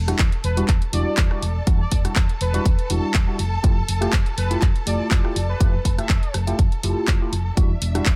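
Dry and close, this filtered disco house excerpt has a sensual, nostalgic glow. A punchy, tape-warm electronic kick sits up front beneath a house kit of handclaps, hi-hat and rim click. A round, dark hollow-body electric bass, a clean tine electric piano with phaser, and a lush, distant bowed string section with vibrato and portamento all pump against the kick. A bold, fat sawtooth synth brass lead with chorus, delay and a filter sweep carries the melody from 0.4 to 6.3 seconds over chords moving between Em9 and Fmaj9.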